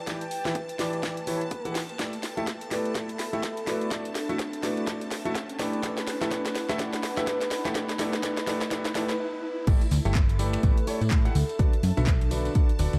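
A swung 4/4 house groove drives this soulful, energetic piano house cut, with an overdriven electronic kick punching up front and a house kit of cracking snare, bright hi-hats, finger snaps, handclaps and crash cymbal filling out the beat. A clear concert grand piano carries the riff with audible action noise, deep bass and long sustain, treated with sidechain pumping, a low-pass filter and digital delay. Above it, a breathy flute-like synth lead sings the melody with vibrato, chorus and delay, while a nostalgic, warbling tape-like pad and a shimmering vintage string machine sit in the background, both treated with sidechain pumping. The opening stretch is a build-up with a drum fill and an electronic riser, a short break at 9.2 seconds, and a drop at 9.7 seconds, where a punchy, funky analog bass with a filter pluck arrives alongside a small-room tambourine. The production is dark, with light reverb and digital ambience, and the chords move through Em7, A7sus4 and D6.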